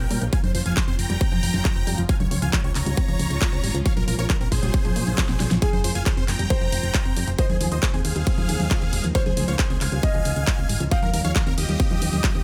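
Opening with a huge, euphoric supersaw lead carrying the melody through phaser and tape echo, this driving, soaring uplifting trance excerpt in F minor at 136 BPM sits over a very quiet, shimmering ethereal pad, a lush pluck playing arpeggios in the background, and a round, dark FM bass, with the pluck and bass pumping with sidechain alongside the lead. A punchy, overdriven electronic kick up front and a big-room kit with a huge snare, congas, handclaps, hi-hat and ride drive the 4/4 groove, with a drum fill at 5.2 seconds. At 5.6 seconds a natural concert grand piano with deep bass enters as a second line through dub echo, as the chords move from Fm through Db, Bbm, Abadd9/Eb and Eb in a dry, loud mix.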